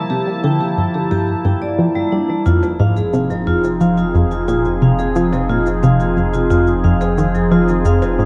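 A steady, straight 4/4 pulse at 89 BPM drives this cosmic, mysterious stretch of ambient, sequencer-driven space music in F minor, cut from a longer piece. A tight sequenced synth carries the riff in the low register, its detuned sawtooth tone given a filter pluck, chorus, delay and a cassette-tape grain. Up front, an evolving wavetable pad holds sustained chords with a morphing, warbling, vintage character, while a vibraphone played with medium hard mallets rings out metallic arpeggios through delay. At 2.5 seconds the harmony moves from Gm7 to Fm7, and a deep, round sub bass with tube saturation enters alongside electronic cabasa and percussion blips that fade in from the background. The whole mix sits in a wet echo chamber with a 2.3-second reverb tail and a cassette-tape haze.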